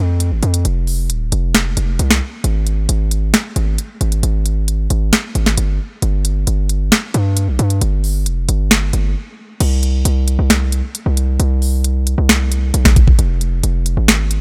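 A dry, up-front mix opens this dark, hard-hitting trap excerpt at 134 BPM in a half-time feel, built only from a hard-hitting 808-style bass and an electronic trap drum kit. The punchy, heavy sine bass carries a noise layer with a fast attack and decaying tail, ranging from Eb1 to G2, while the kit brings a knocking kick, sharp snare, crisp hi-hats, finger snaps and crash cymbal from 0.2 seconds. A brief break at 9.2 seconds leads into a new section at 9.6 seconds that runs to the cut at 14.4 seconds.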